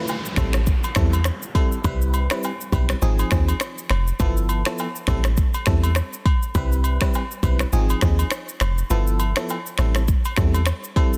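A biting, chorused FM electric piano with tremolo opens this romantic, joyful afrobeats excerpt over a background downlifter that ends by 4.2 seconds, its chords cycling through Am7, Cmaj7, Ab6 and G13. A layered, electronic deep house kit sits up front, pairing a deep kick with finger snaps, rim clicks and shaker in a swung groove, while close, dry agogo bells and woodblock add egg shaker and group handclaps, and a round, dark FM log drum bass with a fast, decaying attack anchors the low end. The mix is dense, heavily limited and nearly dry, and the kick drops out briefly between 8.9 and 10.1 seconds.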